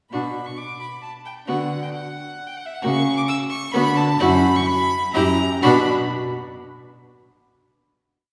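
A quick, urgent and restless classical-period string quartet piece in B minor at 131 BPM in an unevenly pulsed 3/4, where a clear, smooth first violin sings the melody up front with vibrato over a rich, focused second violin and an expressive viola with portamento, both playing short accented and sustained chords, while an intense cello sits up front with bass on the beats, all four playing from 0.1 to 5.9 seconds and heard from further back in a wet scoring-stage reverb that carries the final B minor chord to its close.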